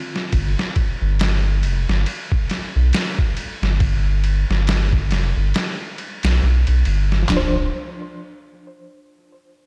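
A reedy electric piano opens this smoky, cinematic trip hop excerpt, sounding briefly with fast tremolo and tape echo before falling away at 0.4 seconds. The sampler-style drum kit arrives almost at once, compressed, pitched down and muffled, with a thumpy kick, medium-tuned snare, ride cymbal, handclaps and toms. The kit sits up front with a tape-warm, small-room character. A round analog bass takes the low end from 0.3 seconds, deep and dark with a fast attack, sustained notes and tube saturation, and it is the most prominent part in the mix. The pace is a slow 69 BPM in 4/4 with a 16th-note swing, centred in D dorian. The piano returns near the close as the harmony settles on Dm7 at 7.3 seconds, set within light reverb and digital ambience.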